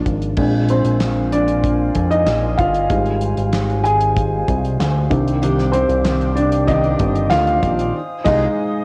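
Piano-driven pop with an anthemic, uplifting mood, this short excerpt from a longer piece puts a dark, woody upright piano up front over mellow, airy flute chords, a fat, detuned sawtooth analog bass and a damped 70s drum kit with tight kick, fat snare, hi-hat, handclaps and crash, while a fingerpicked steel-string acoustic guitar slips into the background at 5.4 seconds, all wrapped in lush hall reverb and the soft grain of a home cassette recording.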